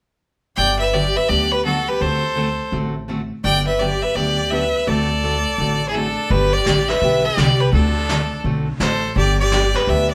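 A swung 168 BPM pulse in 4/4 drives this short, playful slice of down-home western swing in G major, cut from a longer piece and moving between Gmaj7 and D7. Two bowed fiddles enter at 0.6 seconds, one carrying the melody and the other a second line. The lead sits up front with a focused, boxy tone and light vibrato, while the second line beneath it bites with an airy bow and a close, intense edge. A picked jumbo acoustic guitar with fresh strings adds bright, full-bodied accompaniment, and a pizzicato upright bass on gut strings gives a woody, thumpy bottom. At 6.3 seconds a vintage brush kit slips in behind the band, its medium-tuned snare, hi-hat and tight kick warm and rolled off at the top, kept in the background. The group sounds like it is playing live in one room, wrapped in a wet studio reverb.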